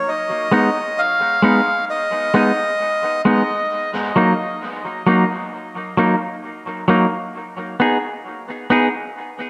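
A reedy, breathy melodica opens this spacious, hypnotic reggae excerpt with a short high phrase, soaked in dub echo, and falls silent at 3.2 seconds. A clean, compressed hollow-body electric guitar enters at 0.5 seconds and carries the accompaniment until 8.9 seconds, its fingered lines also trailing dub echo over a slow, lightly swung groove. A wet spring reverb and a small room ambience give the echo-heavy mix its deep, floating sense of space.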